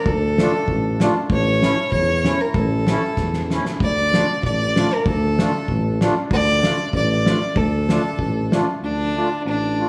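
A rich, smooth fiddle opens this jolly, bouncy alpine folk dance in D harmonic minor at 96 BPM in 2/4, carrying the melody up front with light vibrato while a mellow tuba enters at 0.1 seconds on the bass line and an accordion soon adds sweet, reedy accompaniment colored by light tremolo tuning. A loose acoustic drum kit with a punchy kick and fat snare drives the straight feel, plays a fill from 3.2 to 3.8 seconds and drops out at 8.7 seconds, as the harmony moves from D minor to A and back to D minor. The whole cut from a longer piece sits in a moderate concert hall reverb, with the drums carrying a pumping room sound and a rolled-off top.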